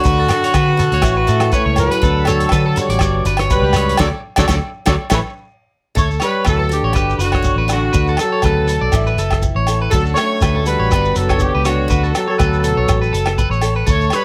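Highlife guitar band music with a warm, sunny mood and a lightly swung groove, cut from a longer piece. A bright, roomy horn section carries the melody up front with slapback echo, joined by a smooth-topped solo trombone on a second line, while a twangy, slightly broken-up electric guitar plays arpeggios with vibrato and echo over a boxy parlour acoustic guitar, a dark, round, foam-muted bass and a tight soul drum kit with a fat snare. Ringing agogo bells and a grainy shekere in the background fill out the percussion, and the band hits an accent from 4.0 to 6.0 seconds, capped by a drum fill, before moving into a new section.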